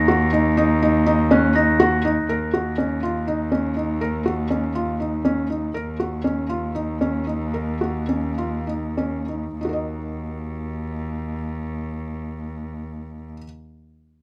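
Contemporary chamber music in 7/8 and Eb minor, urgent and restless at 182-246 BPM in eighths, with a felt-muted upright piano playing intimate, mellow arpeggios up front amid audible action noise, a nasal, boxy bowed cello holding a low Eb with light vibrato beneath it, and a glockenspiel struck with rubber mallets adding airy, bell-like color only for the first 2.2 seconds, before the pulse slows from 5.7 to 9.6 seconds, all captured by close, detailed microphones with light reverb and cut from a longer piece.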